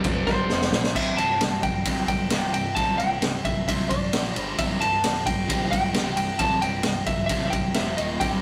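A bright, double-tracked stack guitar riff with overdrive and phaser, a growly fuzz bass in the background and an up-front, gritty garage drum kit with a high-tuned snare open this swaggering, powerful hard rock excerpt at 132 BPM in C mixolydian, with a dark, slightly broken-up lead guitar melody carrying slapback echo entering at 0.3 seconds and a drum fill at 0.5 seconds, in a rough rehearsal-room recording with tube saturation and light reverb.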